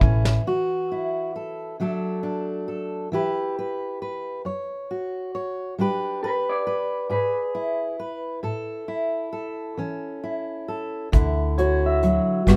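A brushed drum kit, close and up front with a punchy kick, opens this hopeful, intimate acoustic folk-pop ballad in D major with a short fill, then drops out until returning at 11.1 seconds alongside a woody pizzicato upright bass. Through the slow 6/8 sway at 45 BPM, a warm fingerpicked steel-string guitar carries the accompaniment with audible finger squeak, moving from Dadd9 through Em, F#5, G, E7/G# and A. A slightly broken-up, lo-fi electric guitar through a small old amp sounds briefly at the start, then returns from 6.2 seconds with picked arpeggios coloured by harmonic tremolo, all set in a moderate studio ambience in this excerpt from a longer piece.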